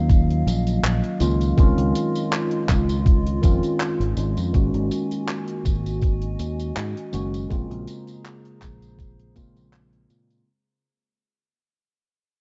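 A mellow tine electric piano opens this nostalgic, woozy vaporwave fragment, its clean tone coated in lush chorus and tape echo, while a detuned, warbling pad holds sustained chords underneath with a slow attack and long release. A round, punchy fingered electric bass sits up front beside the piano, and a thumpy, sampler-style electronic kick joins a dry acoustic reggae kit of handclaps, hi-hat and tambourine in the drums. The groove has a gentle swing on the sixteenths, and the harmony drifts from Ebm9 through Dbmaj9 and Ab7sus4 to Bbm9. The production is dark and cassette-flavoured, with light reverb and a touch of studio ambience. From 2.6 seconds the music fades out until it ends at 10.5 seconds, having been cut from a longer piece.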